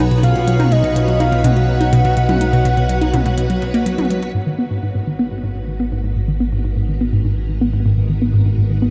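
In a straight 4/4 pulse, this hypnotic, expansive stretch of sequencer-driven ambient space music is cut from a longer piece. A hollow, bouncy square-wave pluck riff with chorus and delay rides over a fat, saturated analog bass, with a lush vintage string machine holding sustained chords. In the first half, a faint bubbling stepped-filter texture, a minimal kit of clicky electronic hi-hat and toms sitting in the background, and a round, octave-layered synth lead with phaser and vibrato (ending at 3.9 s) sound alongside them. From 4.3 s, as the harmony shifts, a filter sweep colours the arpeggio sound, all within a dark production and a huge, slowly decaying ambient reverb.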